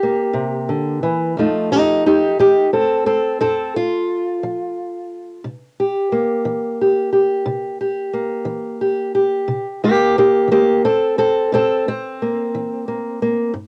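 A fingerpicked old ladder-braced acoustic guitar, dark, woody and boxy with old strings and the grit of cassette tape, sits up front in light reverb and carries this soulful acoustic country blues alone at a slow 59 BPM in a straight 12/8 feel, moving in C mixolydian from C7 to F7 at 1.4 seconds and back to C7 at 5.4 seconds in a brief home-recorded passage cut from a longer piece.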